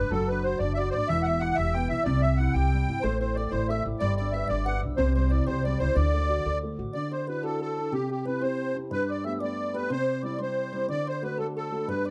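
A reedy, shimmering musette accordion carries the melody up front in this rollicking Celtic folk jig at 122 BPM in 6/8 and D mixolydian, over a dark, vintage upright piano and a woody pizzicato upright bass that stops at 6.9 seconds, while a pure, mellow baroque flute with vibrato and tape echo and a soft, ringing kalimba entering at 3.0 seconds sit in the background, all under light reverb in this lively passage cut from a longer piece.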